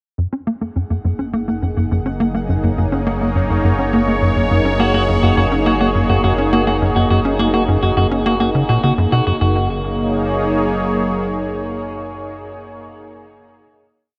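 Drenched in a huge, wet ambient reverb with an 8.1-second tail, this expansive, luminous piece of sequencer-driven space music in F# major moves at 104 BPM in a straight 4/4. A tight, punchy sawtooth-and-square sequencer bass drives a nasal, filter-plucked six-step loop that drifts against the bar, thickened by ensemble chorus and tape echo. Beneath it sits a warbling, vintage analog drone on a low F#, while a bright, airy, detuned resonant pad swells through slowly shifting chorused chords, a very quiet triangle texture pulses on a dark held high note, and from 4.8 seconds a clean, twangy electric guitar picks a three-step arpeggio through tape echo before a final chord rings out at 9.4 seconds.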